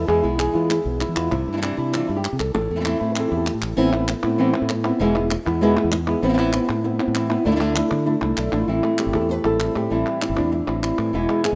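A rough home demo with light reverb and small-room ambience carries this intense, passionate flamenco passage at 196 BPM in A minor, turning to A harmonic minor at 3.8 s, as an up-front, fingerpicked acoustic flamenco guitar sings the melody with audible finger squeak over dark, thumb-plucked guitar stabs, a bright, punchy fingered electric bass and crisp, dry palmas hand claps that join at 0.1 s, all cut from a longer piece.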